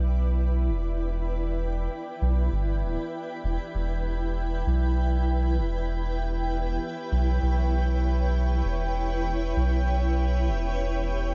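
Hazy and spacious, this ambient dub excerpt at 98 BPM in E dorian rests on a single Em7 chord as a cloudy, evolving granular pad, with its own built-in reverb, fades in across its 11.3 seconds above a deep, round sub bass held up front, the dreamy mix soaked in a cathedral reverb with a 6.6-second decay.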